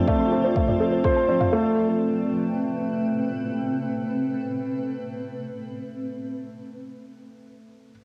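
A hazy home cassette recording with light reverb and a digital ambience gives this short cut from a longer piano and strings electronica piece an intimate, hypnotic feel in straight 4/4. A dark, mellow concert grand piano sits up front with deep bass, playing a riff through the whole passage under a blurred, cloudy granular pad whose sustained chords carry built-in reverb, sidechain pumping and tape coloring. A soft, round pluck plays gentle arpeggios in the background through chorus and analog delay, with a filter sweep running over it until about 1.5 seconds. In the opening moments, a tape-warmed electronic kick with a deep thump and layered electronic toms add a brief pulse, the toms dropping out by 1.5 seconds. The harmony moves from Dm7/F to Amadd9, and the pad holds on until 5.7 seconds before the piano carries on alone to the end.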